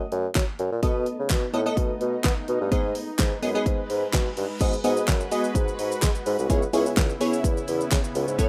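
Bittersweet yet energetic, this dance-pop excerpt in C# minor drives along at 127 BPM in a straight 4/4, cut from a longer piece and heard as a rough home demo mix with little reverb. A crisp, detuned wavetable chord stab and a mellow bassoon with vibrato carrying the bass line both pump with sidechain from the start, over a punchy, up-front pop drum kit of kick, fat snare, hi-hat, shaker, crash and handclaps, while a lush, thick unison pad with chorus joins at 1.2 seconds. A distant group handclap sits very quietly underneath until 4.2 seconds, and a reverse cymbal sounds in the background from 3.9 seconds into the second section at 4.6 seconds, where the harmony moves from G#m7 to C#m7.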